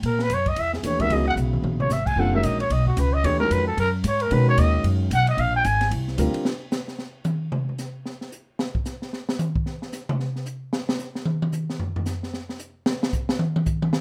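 A brisk 224 BPM swing in 4/4 drives this spiritual, open modal jazz fragment, with woody pizzicato upright bass and an up-front kit of dark cymbals, a high-tuned snare and a boomy kick, plus a short fill at 1.4 seconds. A raspy, growling trumpet solos over F#13, B6/F# and A#7 harmony with vibrato and scooped notes, while an intimate grand piano, its action noise audible, accompanies from 0.8 seconds. At 6.5 seconds the others fall away and the drums take an unaccompanied solo, all under light reverb.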